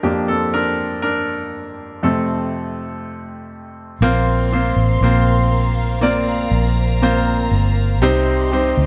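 Pop in Bb major at a slow 60 BPM, tender and emotional, opening with a bright, polished concert grand piano playing alone up front with short sustain over Bb/F and F chords, before a round, punchy foam-muted electric bass and a dark, intimate bowed string section with soft attack and light vibrato enter together at 4.0 seconds across Bbsus2 and Cm, all set in a light studio reverb.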